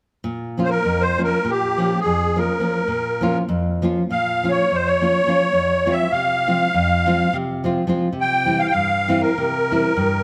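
Balkan folk fragment in free time, bittersweet and restless, where a woody, full-bodied fingerpicked nylon-string guitar with old strings sits up front as accompaniment from 0.2 seconds, joined at 0.6 seconds by a reedy, shimmering musette accordion carrying the melody up front in its wet tuning, all over a harmony moving from Bbm to Fm to C within a moderate stage reverb.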